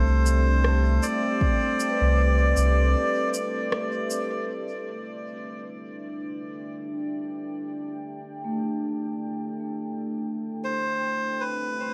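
A round, soft sub bass sits up front with a touch of tube saturation, anchoring the opening of this hazy, peaceful ambient dub piece at 78 BPM in 4/4 with a gentle 16th-note swing. A reedy, breathy melodica carries the melody with tape echo, returning near the close at 10.6 seconds. Beneath it, a moody, warbling pad holds sustained chords with chorus and its own reverb, moving from C69 to D7sus4 at 4.5 seconds. A metallic, ringing vibraphone with medium mallets plays arpeggios throughout through a low-pass filter sweep and tape echo, with a boxy small-room character. Early on, an overdriven electronic shaker and rim click with dub echo enter, soon joined by a deep, tape-toned electronic kick, before a break at 3.0 seconds strips away the bass and lets the pad and vibraphone float in a moderate digital echo-chamber ambience.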